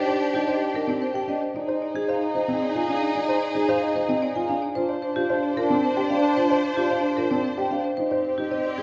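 From the first beat, a woody rosewood marimba on medium hard mallets carries the melody over a dark, boxy baby grand piano playing up-front arpeggios, bowed strings holding rich, vibrato-laden chords and a distant French horn adding a second line in the background, all bathed in wet recital-hall reverb in this hypnotic, propulsive minimalist classical excerpt at 112 BPM in 3/4, tuned to A4 = 436 Hz, as the harmony moves from Ebmaj7 through Fm7 and Bbadd9 to Abmaj7.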